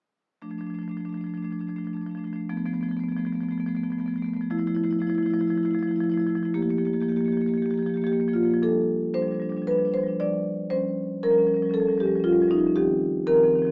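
Heard through a small-speaker sound in a moderately reverberant stone room, this flowing, playful fragment of a contemporary classical piece features a solo marimba struck with medium mallets, its mid-forward, up-front tone drifting in rubato from 0.4 s through chords such as Fmaj7 and Gm7/F before moving at 8.6 s into a new section colored by F69 and a rootless Eb13/F, settling on Eb69 as it is cut off at 13.7 s.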